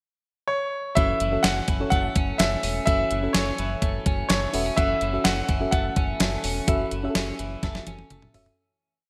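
A clean 12-bit digital drum machine drives this nostalgic, urgent 1980s-style pop piece at 126 BPM, its thumpy kick and fat snare sitting up front with gated reverb and a big backbeat. A bright concert grand piano opens the pickup bar with a brilliant, motif-based melody through delay. An F#m7 pre-chorus arrives at 1.0 s, bringing a round analog bass driving eighth notes, a mellow FM electric piano playing syncopated chords through chorus, and a compressed twelve-string electric guitar riff in a fingerpicked roll. A lush hall reverb adds digital ambience before a fade-out from 6.7 s and a drum fill at 7.6 s.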